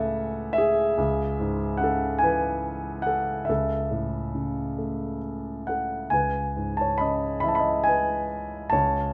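A warm, up-front grand piano plays alone through this tender, calm nine-second excerpt of lyrical classical music in C# minor, drifting with rubato over a slow 6/8 pulse of about 46 dotted-quarter beats per minute, its harmony moving from Amaj13/C# to A6/C# and settling on C#m7 at 6.1 seconds, all held in a moderate recital hall reverb.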